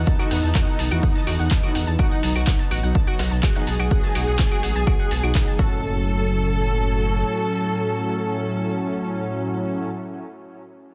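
A straight 4/4 pulse at 125 BPM drives this dark, cinematic melodic techno passage in F# dorian, cut from a longer piece, where a punchy, tape-warm electronic kick sits up front alongside an overdriven deep house kit of claves, handclaps and metallic hats, a very quiet brushed jazz kit with high-tuned snare, hi-hat and tambourine, and a grainy tube shaker, all dropping out by about 5.8 seconds as the drop gives way to the second section. Over chords moving from Esus4 to B to F#m, a thick, bold unison sawtooth lead carries the melody with vibrato and tape echo, joined by a smooth, clear studio violin section playing a second line, while a lush, slow-attack unison pad glows in the background and a round, bright analog pluck spins arpeggios until 6.0 seconds. Underneath, a rumbling, detuned saw bass with tube saturation and nasal, fat analog brass stabs with chorus and echo add weight, with sidechain pumping on the melodic parts and bass, all within a dense, heavily limited modern master bathed in studio reverb.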